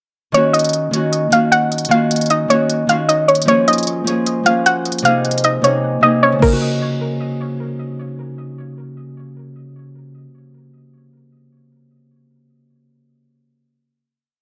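Menacing and dark, this short half-time trap piece at 153 BPM in Eb dorian sets a soft, round pluck melody with chorus and tape echo, looping like a sample, over fingerpicked, ringing Celtic harp chords moving from Ebm7 through Bbm7 and Abadd9, while a trap drum kit with a hard-clipped kick, crisp hats and fast hi-hat rolls drops out at 5.8 s before the harp rings on alone to 10.2 s in light reverb.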